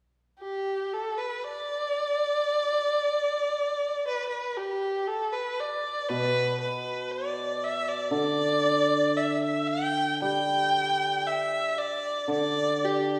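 Chinese traditional chamber music in a pastoral, graceful rubato, this excerpt opens at 0.4 s with a single clear bowed erhu singing the melody with vibrato and smooth portamento, joined at 6.1 s by a bright, shimmering hammered dulcimer ringing low underneath, all set back in a reverberant recital hall with a faint mains hum.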